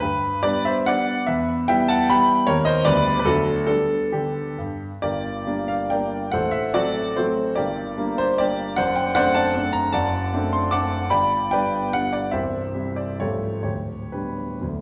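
Romantic classical piano music, a rustic and graceful triple-time dance in 3/4 with dotted rhythms, moving with free rubato between 118 and 169 BPM. A solo grand piano with a warm, present tone and long sustain spans C1 to D6, starting in G major, turning to G minor at 5.0 s and returning to G major at 9.9 s. The piano sits up front yet is heard from further back in a recital hall, whose wet reverb lingers around it in this brief excerpt from a longer piece.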